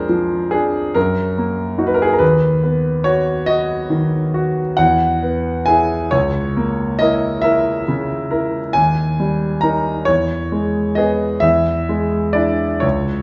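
Flowing in a slow 9/8 at 40-48 BPM counted in dotted quarters, the rhythm bends freely with rubato, giving this romantic classical nocturne a wistful, yearning pulse. A single concert grand piano carries the whole passage alone from 0.0 to 13.2 seconds, ranging from C#2 up to A#5. Its tone is clear and smooth, with a deep bass and a slightly vintage character, and it sits up front in the sound. The harmony drifts from a diminished opening through D#m, B and E before settling toward E7 near 11.4 seconds. A wet recital hall reverb with a 1.4-second decay surrounds the instrument, adding a sense of space to this short cut from a longer piece.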